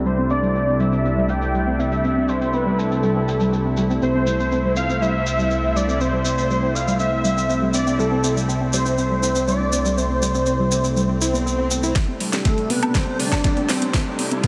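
A thick, bold unison lead carries the melody up front in this uplifting, hopeful progressive house excerpt, its mellow sawtooth tone shaded by vibrato and a diffuse ambient delay. Beneath it, a lush, full-bodied pad holds sustained chords with a slow attack and a touch of 12-bit sampler grit. A soft, round pluck spins chorused, delayed arpeggios through a filter sweep, and a fat, nasal analog bass adds tube-saturated weight. Grainy, vintage maracas add a mellow acoustic texture, while sidechain pumping makes the pad, pluck, bass and leads breathe. An electronic swell and riser creeps in from the background at 11.2 s, and at 12.0 s the drums arrive for a build-up and fill: an overdriven, knocking kick, a deep house kit with a fat snare, metallic hats and woodblock, and a very quiet, gritty sampler-style kit. An airy, dreamy second lead joins at 12.5 s, bright yet tucked back, as a cathedral-sized reverb and low-pass filter soak the mix in a hazy glow.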